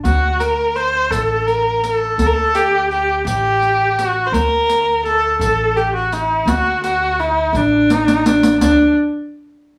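A single bowed kamancheh leads this Persian modal ensemble piece from up front, its focused, slightly boxy tone carrying a melody between D4 and C5 with vibrato and portamento that give it a longing, melancholic voice. Underneath, a pizzicato upright bass on gut strings supplies a woody, thumpy low end between A1 and D2, sitting well below the melody in level. A riq adds bright jingles that sound close and dry. The music moves in a slow, straight 6/8 at 56 BPM in dastgah homayun on D, tuned to A4 = 441 Hz, and the three players share one room with a wet studio reverb around them. A percussion fill from 7.9 s leads into a new section at 8.6 s, and all three parts stop at 8.9 s in this fragment cut from a longer piece.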